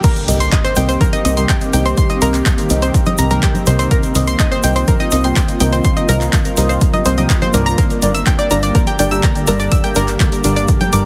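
A punchy, up-front electronic kick drives this emotional, dreamy progressive house drop. Around it, an overdriven dance kit of crash, handclaps and hi-hat sits with a grainy egg shaker, softly played ringing congas and a very quiet impact hit at the start, while a tight, dark sawtooth sequencer bass and deep, mellow chord stabs coloured by phaser and tape echo pump with the sidechain. Alongside them, round analog pluck arpeggios and an ethereal, shimmering pad with slow-attack sustained chords float over a Cm7 that moves to Gm at 7.8 seconds, all pressed into a dry, heavily compressed radio-style sound.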